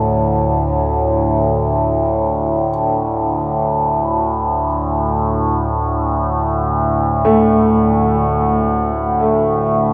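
Dark ambient drone in free time with a dark, unsettling mood, built on a D5 chord and cut from a longer piece. Up front, a resonant sawtooth-and-sine drone sits low, with slow-attack, long-release sustain, moving overtones, chorus and its own reverb. Behind it, a warm, boxy grand piano plays arpeggios with audible action noise and long sustain through a diffuse ambient delay, both parts running the full 9.9 seconds inside a cathedral reverb that decays over 6.9 seconds.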